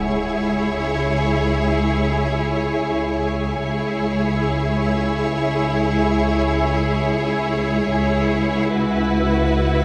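A lush, reverberant string sound fills a scoring stage in this tense, ominous suspense cue, cut from a longer film score and moving in free time in C# minor from C#m to Esus2/C# at 7.9 s. Two violin sections carry a vibrato melody and a second line in the background while a bright viola section holds its accompaniment, over a cello section and a double bass section playing a smooth, even bass on C#2. A flickering, grainy granular texture with its own reverb sustains chords, a dark, boxy piano adds very quiet texture, a higher, warm violin section plays in the background until 7.5 s, and a huge, bright impact sounds distantly from the start until 3.6 s.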